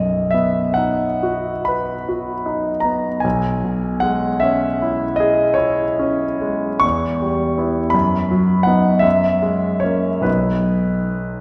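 Serene and dreamy, this romantic classical nocturne for solo piano unfolds in a lilting 9/8 with free rubato, drifting through a short progression that ends on a half cadence-like ninth chord before settling home at 10.3 seconds. The concert grand sounds intimate and up front, its deep bass and polished tone carried by long sustain, with the noise of the action audible beneath the notes. A wet concert hall reverb surrounds the instrument, and the passage is cut from a longer piece.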